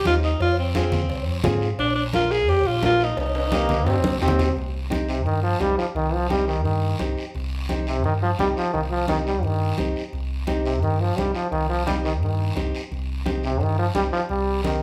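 Recorded as a band playing live in one room with a moderate large-studio reverb, this driving, danceable cumbia in C minor moves at 172 BPM, with an up-front amped electric bass, a boxy fingerpicked flamenco guitar, raspy close guiro, hard-handed ringing congas, and distant metal-shell cowbell and timbales in the background. A bright alto saxophone carries the opening melody with light vibrato and a subtone edge until 4.2 seconds, over Fm, Bb and Cm chords. A smooth-topped pop-style trombone comes in at 3.5 seconds, and after a drum fill it takes a solo from 4.6 seconds to the end of this cut from a longer piece.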